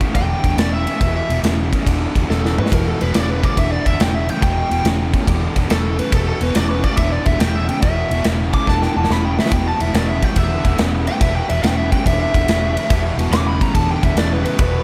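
Blues rock in the power-trio mold with a southern rock lean, this brooding, smoky passage swings at 141 BPM in 4/4 and sits on a single E minor chord throughout, cut from a longer piece. A fuzzed, double-tracked guitar riff grinds low in the register under distortion and slapback echo, while a dark, round, foam-muted bass holds down a deep E. The big acoustic drum kit, recorded in a big room, is the most forward part, with a punchy kick, medium-tuned snare, bright cymbals on the ride, and toms, plus fills around 2.3 and 8.7 seconds. Over this, a lead guitar through a small cranked amp solos for the whole stretch, its overdriven, picked tone ranging from A4 up to D6. At 9.5 seconds a very quiet, gritty tonewheel organ slips in with thick sustained chords colored by chorus vibrato and a slow rotary speaker, all bathed in light reverb and studio ambience.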